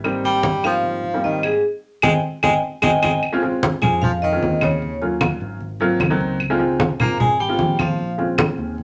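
The recording sits in a wet studio reverb, with the congas placed close and up front alongside an up-front vibraphone and piano. This sunny, sophisticated Afro-Cuban jazz cut in straight 4/4 is taken from a longer piece. Its groove comes from low-tuned congas struck with hard hands, compressed and saturated claves, and a round, amped fingered electric bass. A warm upright piano with short sustain comps chords beneath the tune. The vibraphone carries the melody with medium hard mallets, its metallic ring shimmering on a slow motor vibrato within a boxy small-room tone. A bright, punchy baritone saxophone enters at 0.2 seconds as a forceful second line in jazz style, with light vibrato and scooped notes. The band hits an accent together from 1.6 to 3.2 seconds, and then the harmony moves into a new passage of suspended and lush extended chords.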